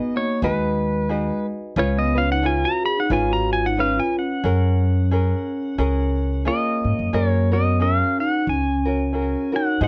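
A languid, sunny Hawaiian excerpt in F# major at 90 BPM with a swung 4/4 feel opens on a bright, clean electric pedal steel guitar carrying the melody with fingerpicks, slide and volume swells up front, a mellow soft-mallet vibraphone with its motor off ringing a close, dry second line, and a light fingerpicked tenor ukulele accompanying through G#m7, C#7 and F#maj9 before the woody, thumpy pizzicato upright bass joins at 0.4 seconds, the whole wrapped in light reverb and the warbling pitch drift of worn old cassette tape as the harmony settles on F#add9 at 7.1 seconds.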